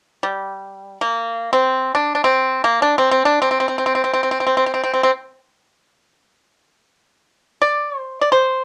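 Flowing and serene, this short passage of Chinese traditional music gives the pipa the stage as a solo plucked-string voice. The instrument enters at 0.2 seconds and carries on alone until 8.6 seconds, moving between G3 and D5. Played with fingerpicks, its acoustic tone comes across as bright, dry and percussive, placed up front in the mix with a cassette tape colour. A light reverb gives a modest sense of the room in this home recording made on cassette. The passage is cut from a longer piece, so it sounds like a brief glimpse into a larger performance.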